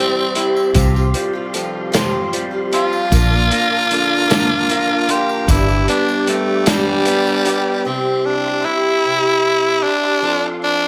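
A breathy, raspy tenor saxophone with slapback echo takes an up-front solo over a hopeful, open-road folk rock and heartland rock groove in 6/8 at 51 BPM in C mixolydian, backed by a shimmering, octave-doubled picked twelve-string acoustic guitar, a slightly broken-up electric guitar riff, a very quiet reedy electric piano, a softly sustained tonewheel organ with slow rotary, a muffled vintage drum kit, a jingly tambourine, and a round, dark fingered electric bass that drops out at 5.9 s, all in a light small-room ambience, as the drums, electric guitar and electric piano fall away by 7.9 s, leaving saxophone, twelve-string and organ moving from C to F in this excerpt cut from a longer piece.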